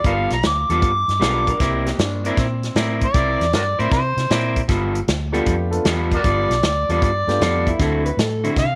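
A swung electric blues shuffle at 155 BPM in G mixolydian, swaggering and gritty, where an overdriven harmonica with scooped notes and tongue slaps leads over a twangy, slightly broken-up guitar riff, a round, foam-muted bass and a natural country drum kit with a tight kick, while a lo-fi, picked second guitar slips in at 1.2 seconds and a woody upright piano adds accompaniment from 5.3 seconds, all in light studio reverb over G9, C9 and D9 chords in this short cut from a longer piece.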